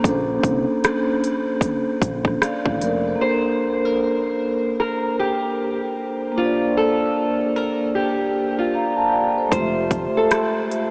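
A mellow soft-mallet vibraphone with slow motor vibrato and cassette-tape haze opens this dreamy, cosy lo-fi hip hop excerpt over a dark, round fingered bass and an overdriven dance kit of punchy kick, crisp hats and rim clicks in a swung groove, before bass and drums fall away as a small, fingerpicked nylon-string guitar with finger squeak, lush chorus and tape echo takes the melody at 3.2 s, and bass and drums return at 9.5 s as the harmony shifts from Bbmaj9 to Fmaj9, all soaked in huge ambient reverb with a small-speaker sound.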